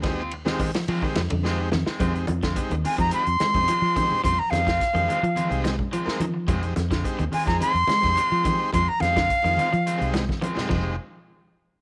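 Light reverb and a small-room ambience frame this short, intense afrobeat cut from a longer piece, moving at 107 BPM in a straight 4/4 on a single Fm7 chord. A distant, roomy soul drum kit with a tight kick, a medium-tuned snare and a rolled-off top drives the groove across crash, ride, hi-hat, kick and snare, with fills at 1.4 seconds and again near the close. Underneath, a dark, round fingered bass anchors the low end, while low-tuned vintage congas with a bright, thin-skinned tone stay in the background. Two slightly broken-up, twangy electric guitars fill the middle: one fingered and lightly chorused, playing arpeggios, the other picked, firing short stabs. A buzzy combo organ with heavy vibrato adds clean accompaniment, and at 2.9 seconds a breathy, reedy jazz flute steps up front for a defiant solo in its upper register, with a crisp chiff and vibrato, before the harmony drops out at 11.0 seconds.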